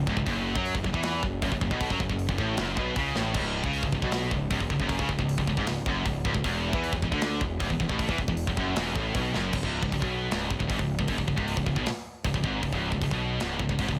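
Three bright, picked high-gain guitars open this heavy, aggressive metal excerpt with a low, distorted riff, one of them scooped and one double-tracked, all sitting in the background behind a growly, punchy fuzz bass that stands up front. A tight acoustic kit sits forward too, with a firm kick, medium-tuned snare, crash, hi-hat and a rolled-off top, and it throws in fills at 3.2 and 9.3 seconds. At 9.5 seconds the double-tracked guitar drops away as a new section begins, all within a light reverb.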